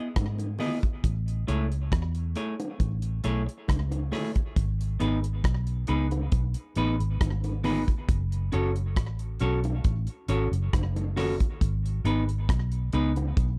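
A dark, warm production with little reverb frames this uplifting roots reggae excerpt in straight 4/4, moving from Emaj7 and Amaj7 into G#m and F#m. A clean, picked semi-hollow guitar with tape echo opens at 0.0 s. At 0.2 s a foam-muted, round and punchy fingered bass and a damped 70s kit with a tight kick, hi-hat, rim click and a rolled-off top join it up front, while low-tuned bongos played with soft hands sit distant, as if in a large room.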